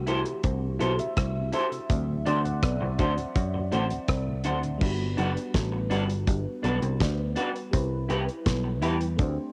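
Smooth and tender lovers rock reggae at 82 BPM in G major, cut from a longer piece, where a dreamy, detuned FM electric piano with a soft pad layer, treated with chorus, phaser and tape echo, takes a solo over the first 4.8 seconds atop a growly, foam-muted picked bass, a damped 70s drum kit with a fat snare and tight kick, twangy lo-fi guitar stabs bathed in lush chorus, a darker compressed guitar riff in the background and a very quiet, round tonewheel organ on slow rotary that drops out at 4.7 seconds, all moving from C6 and D7 to Gmaj7 and Cmaj7 in the small-room ambience of a home cassette recording.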